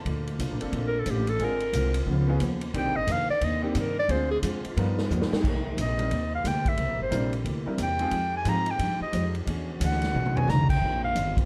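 A clarinet with light vibrato carries an up-front solo over soft-attack sustained chords from a background saxophone section and a woody, thumpy pizzicato upright bass in this swinging, brassy big band swing excerpt. A full-bodied fingerpicked acoustic guitar with audible finger squeak and a distant, roomy drum kit with dark cymbals and a boomy kick join almost at once, a clear baby grand piano with short sustain enters at 0.6 seconds, and the drums play fills at 5.1 and 10.2 seconds. Light reverb sets it all in a warm production as the harmony moves from Bbmaj7 to close on Eb69.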